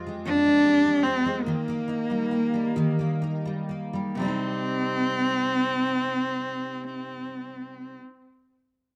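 A picked steel-string acoustic guitar opens this short fragment of a six-eight pop ballad, its full-bodied, jumbo tone double-tracked and set up front as it carries the accompaniment. A bowed cello joins at 0.3 seconds with the melody, a single close, expressive player whose warm sound has a soft attack, vibrato and portamento. The mood is dramatic and aching, and the pace slows through the opening section until 4.2 seconds. The harmony moves from Fmadd9 to Eb before settling on C minor as the second section begins at 4.2 seconds. The recording is dry and open-air, captured outdoors with little reverb, so both instruments sound immediate and intimate.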